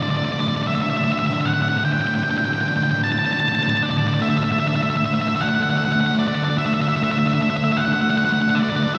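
Rock in 6/8 at a slow 51 BPM counted in dotted quarters, this short piece cut from a longer work feels cinematic and cathartic as it builds across its full 9.0 seconds. A double-tracked fuzz guitar plays a dark, picked riff low in the range, sitting up front throughout. Above it, an octave-fuzz lead guitar carries the melody between D5 and A5, its distorted tone equally close and present. The harmony moves from Asus4 to D at 4.2 seconds, lending the build a sense of release. Both guitars bloom into a cavernous cathedral reverb with a long 6.6-second tail, captured in a church or concert hall setting.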